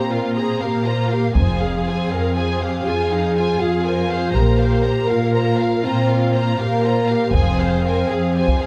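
Up front in the mix, a lush cello section carries the bass with close, expressive vibrato, giving this dark, dramatic cinematic orchestral cue its heavy foundation in 12/8. Above it, the violins sing a woody, bowed melody while a second violin line sits softly in the background, and the violas fill in the accompaniment with a soft attack. A French horn section holds sustained chords in a classical style, adding a warm glow to the harmony, which moves between suspended and minor colours. A focused double bass section joins at 1.4 seconds to deepen the low end. A taiko ensemble struck with hard sticks sounds close and dry, booming in at 1.4 seconds and returning at 7.3 seconds. The strings and horns are set in a moderate scoring stage reverb, and the passage is cut from a longer piece.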